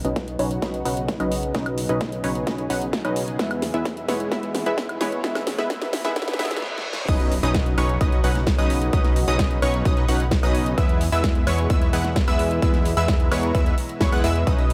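This triumphant, euphoric festival progressive house excerpt at 130 BPM in B major opens on a build-up: an up-front, detuned supersaw stab riff under a filter sweep with pumping and delay, a fat analog bass, a very quiet lush pad, a big-room drum kit with a huge snare and metallic hats playing a fill, faint riser effects, and a punchy electronic kick joining at 0.2 seconds. A reverse cymbal leads into the drop at 7.1 seconds, where an impact lands and a bright, phased unison pluck arpeggio enters in the background. The chords move between Badd9 and E, and the whole mix sits in light digital ambience.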